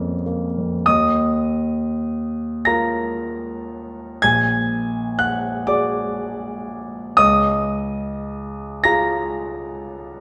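Impressionist classical solo piano in Eb minor, hazy and mysterious, drifting in a rubato 6/8 at 32-42 BPM in dotted quarters and tuned to A4 = 438 Hz: a warm concert grand with deep bass sits up front across a span from Bb1 to Bb6, moving from Bbm7 through Ebsus2 at 0.9 s, Bbaug7 at 4.2 s and Dbadd9 at 7.2 s, all bathed in a wet scoring-stage reverb with a 1.7 s decay in this fragment cut from a longer piece.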